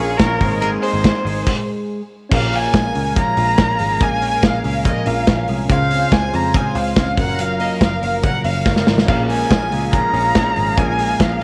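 Jangly indie pop at 142 BPM with a youthful, nostalgic mood, this excerpt from a longer piece sets a smooth, vibrato-rich bowed violin melody with slapback echo up front over bright, twangy twelve-string electric guitar arpeggios with slapback echo, a round, foam-muted picked bass, a detuned sawtooth analog pad with chorus, very quiet, mellow electric-piano-like synth keys, and a slightly broken-up electric guitar through a small old amp that drops out at 1.5 seconds and returns at 9.1 seconds, while a punchy, loose indie drum kit with dark cymbals enters at 0.2 seconds and carries the piece through a brief stop and a drum fill, all set in a light small-room ambience.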